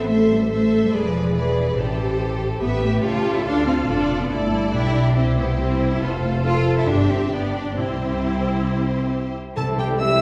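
A focused, lush cello section anchors this cheerful, spirited fragment of a quick classical-period orchestral movement, played with rubato, where rich vibrato violins carry the melody and a second line over expressive portamento violas and up-front double basses through a minor-tinged progression that brightens to a cadence, before a dark clarinet, mellow cor anglais, distant horn section and close timpani all enter at 9.6 s, the whole set back in a reverberant recital hall.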